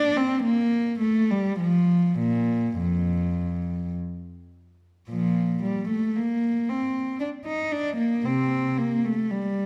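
Classical baroque-style suite movement for unaccompanied cello in Bb major, a flowing, dance-like excerpt in 3/4 at a rubato 50-58 BPM, where a single bowed cello plays solo for the full 9.7 seconds with light vibrato, soft attacks and an airy sul tasto tone, sounding intimate and up front within a moderate scoring-stage reverb and a dark production.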